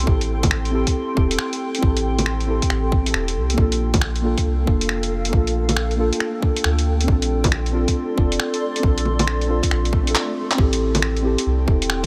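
A tight, layered electronic kick sits up front in this wistful, rainy future garage excerpt, joined by a muffled, compressed sampler-style kit of bongos, finger snaps, handclaps and swung hi-hat, while a round, soft dub sub bass with tube saturation, dark, muted felt-like synth keys with chorus and tape echo, and a blurred, evolving granular cloud pad all pump under sidechain over Am7, Gm9 and Bbmaj9 chords, until a background electronic swell at 9.9 seconds leads into a drum fill and a band accent at 10.5 seconds.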